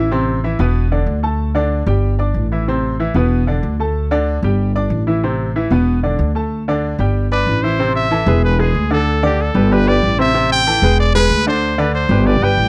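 A bright, present trumpet takes the melody at 7.3 seconds, riding over a fiery, danceable salsa groove in A minor at 188 BPM. From the start, a brilliant, polished upright piano with short sustain carries the accompaniment through a repeating cycle of Am, E5, D5 and G chords, while a woody, growly pizzicato upright bass with steel strings sits up front underneath. The dry, close sound recalls a 1970s studio, and this cut from a longer piece moves into its second section at 7.8 seconds, where E7 and a closing Gadd11 color the harmony.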